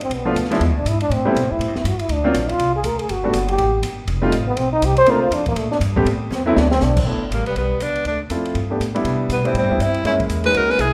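Small-group swing and bop jazz with a playful, swinging feel, opening with a trombone solo full of vibrato and scooped notes over pizzicato upright bass, a natural-toned baby grand piano with short sustain, and a drum kit with dark cymbals, a high-tuned snare and a boomy kick. A drum fill at 6.3 seconds leads into a new section at 7.1 seconds, and at 7.3 seconds a breathy, whispered tenor saxophone takes the melody with an intimate subtone and soft attack. The woody bass, piano and saxophone sit up front, and a moderate recital-hall reverb gives the group the sound of a church or concert hall in this short excerpt.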